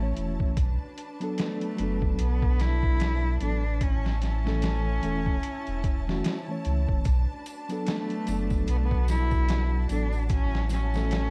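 A deep, round sub bass sits up front in this dark, melancholic trip hop excerpt in B minor at 74 BPM, where a nasal, boxy cello with vibrato and tape echo carries the melody over a reedy electric piano pulsing with fast tremolo, lush bowed symphonic strings and a gritty, overdriven, pitched-down sampler-style drum kit that enters at 0.2 seconds, while bright, dry tambourine and congas join in the background at 7.0 seconds and a very quiet, breathy wind-like noise texture drifts in at 7.6 seconds, all wrapped in vinyl crackle and a dusky, warm production.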